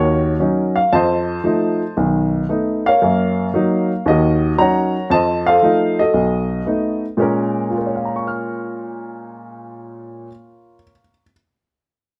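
A woody, polished upright piano sits up front in this swinging, late-night solo jazz excerpt, ranging from deep bass to high treble over a cycling progression of Ebm7, F7, B7 and Gb6 before settling onto Bbm7 at 7.2 seconds, all caught with light reverb in a live room feel.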